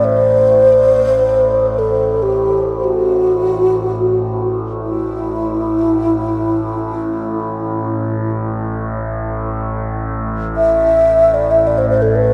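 Soaked in a huge ambient reverb with a 7.6-second decay, this dreamy recording carries the soft grain of cassette tape. It is a short, free-time passage of meditative world music in A dorian, cut from a longer piece, with a spacious, unhurried mood. Up front, a wooden-headed alto flute carries the melody from E4 to E5, its breathy, mellow tone marked by vibrato, tongued notes and an unsteady quality, with delay trailing its phrases. Beneath it, a lower drone between A1 and A2 blends sawtooth and sine tones, with overtones that shift and sweep through a resonant body. The drone fades in with a slow attack, sustains with a long release, and is colored by chorus, phaser and its own reverb. Both parts sound together from 0.0 to 12.3 seconds.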